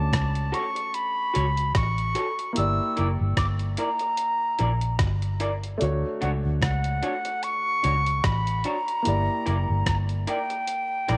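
A pure, straight-toned concert flute with a crisp attack and tape echo carries the melody up front in this smooth, tender lovers rock reggae excerpt at 74 BPM with swung sixteenths in D major. Beneath it sit a dark, round, foam-muted fingered electric bass, a short-sustain grand piano with slapback echo, and a gated 80s drum machine with a thumpy kick, hi-hat and rim click entering at 0.1 s. Slightly broken-up, lo-fi guitar stabs with lush chorus join from 0.5 s, all moving between Dmaj7 and Gm6 in light reverb.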